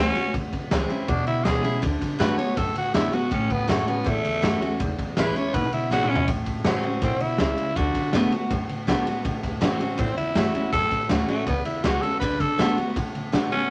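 A raspy, growling tenor saxophone carries the melody with light vibrato over a full-bodied picked dreadnought acoustic guitar, woody thumpy upright bass and a saturated garage drum kit with a punchy kick in this rowdy, rollicking rockabilly cut in A major at 162 BPM, with light reverb and a drum fill at 5.9 seconds leading into the repeat of the opening section.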